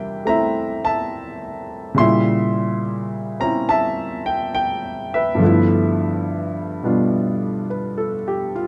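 A clear grand piano opens alone and plays for the whole 8.7-second excerpt, a playful, relaxed slice of solo jazz cut from a longer piece. It moves at an easy swing in 4/4, its eighth notes lightly lilting, and spans from G2 up to C6. The harmony starts on C13, shifts to C#dim7 at 2.0 seconds, and settles on G13 at 5.4 seconds. The instrument sits up front with an intimate, natural tone, and the clatter of its action can be heard beneath the notes. Light reverb and a dark, warm production give the close sound a gentle glow.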